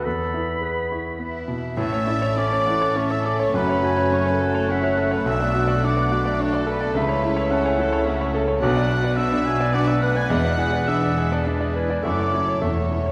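A clear concert grand piano carries the melody up front, its smooth tone reaching from a deep bass at B1 up to D5, in this passionate, lush romantic movement for piano and orchestra in A major, cut from a longer piece. The tempo moves around 98-110 BPM in a rubato 3/4. From the start, woodwinds weave second lines around the piano: an airy, distant concert flute, a mellow clarinet in the background, and an oboe with vibrato and a vintage classical colour, while a very quiet, punchy bassoon supplies accompaniment. A bowed violin section playing sul tasto enters at 1.2 seconds with a floating second line, and at 1.8 seconds the other strings join: a second violin section carries the melody softly in the background, a very quiet viola section adds accompaniment, cellos and a rich double bass section anchor the bass, and a very quiet French horn section holds sustained chords. The harmony passes from E to A, F#m and Bm7 through E7 before settling on A/E, all set in a moderate scoring stage reverb.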